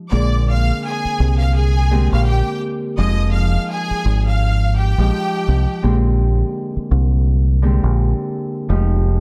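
Reflective and dark, this short cut from a longer boom-bap hip-hop piece rides a swung groove over a round, up-front fingered electric bass that holds low beneath Bb13 and Fm9 chords. A mellow, thumb-plucked Celtic harp rings out in accompaniment throughout, while a lush, vibrato-rich violin section carries an intense, distant melody with slapback echo until 5.8 seconds. The production is dry and dark, with the bass sitting heaviest in the mix.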